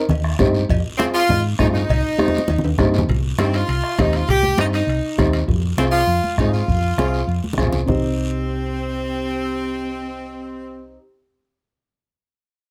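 This danceable, fiery cumbia excerpt opens with a round, punchy hollow-body electric bass, soft-handed congas set in the background, ringing metal cowbell and timbales that drop out at 5.5 seconds, a raspy, close guiro and a distant, soft-beater bombo, before a dark, woody upright piano with long sustain joins and, at 1.0 seconds, a tight, up-front saxophone section takes the melody with jazz-style vibrato, the percussion stopping at 7.9 seconds as piano, bass and horns carry on under light reverb.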